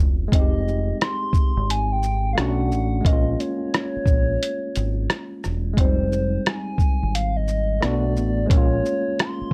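Nostalgic and reflective, this lo-fi hip hop excerpt in a swung 4/4 opens with a worn, slightly out-of-tune tine electric piano, lightly overdriven and cassette-tinged, alongside a deep, round dub bass played with the fingers and sitting up front. At 0.3 seconds a hollow, woody clarinet-like synth lead enters with vibrato, chorus and phaser, carrying the melody high over the chords. A muffled, pitched-down sampler-style kit joins at the same moment, pairing a thumpy kick with hi-hat, rim click and shaker under light reverb.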